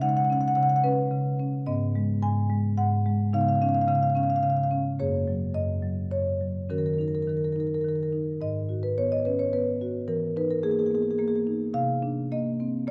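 Wet recital-hall reverb surrounds a close-miked, full-bodied solo marimba played with medium mallets, spanning its low to high register in this reflective, hypnotic contemporary classical passage in straight triple time, whose rich extended harmonies shift into a new section at 8.4 s before the fragment, cut from a longer piece, ends at 12.9 s.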